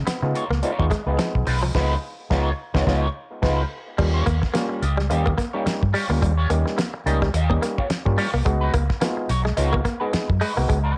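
Playful and energetic, this funk excerpt moves at 107 BPM in Eb mixolydian with a swung sixteenth feel, its dry, home-cassette sound built on a damped 70s drum kit with a fat snare and dark cymbals alongside a round, foam-muted vintage bass sitting up front. Over them, a slightly broken-up, twangy guitar adds wah-colored accompaniment, a bright, direct-recorded clean guitar picks a compressed riff with spring reverb, and an overdriven auto-wah clav punches out stringy stabs through analog delay. The band hits a shared accent from 1.8 to 4.0 seconds before the harmony shifts from Db9 to Eb9 at 4.0 seconds, later settling on Db9sus4.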